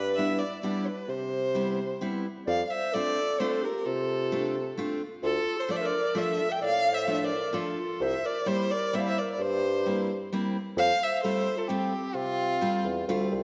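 A rich, focused violin sings the melody up front with vibrato and a slapback echo in this charming, nostalgic musette waltz in F major at 130 BPM, over a mellow bassoon bass with light vibrato and bright picked steel-string acoustic guitar, while a present, classical-style clarinet adds a second line from 2.5 seconds, all set in a wet concert hall reverb in this fragment cut from a longer piece.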